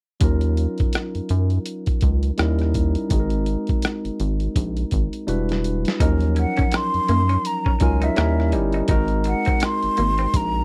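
R&B and neo-soul in a soulful, smooth vein, this dry, close 1970s-style excerpt pairs a barky tine electric piano through a combo amp with a rubbery, nasal square bass and a gritty, pitched-down boom bap sampler-style kit with a thumpy kick, and after a drum fill at 5.3 seconds a picked clean electric guitar enters at 6.0 seconds, followed at 6.4 seconds by a breathy, close-miked silver concert flute carrying the melody with vibrato over Ebm9, Eb7b9 and Ab9 chords.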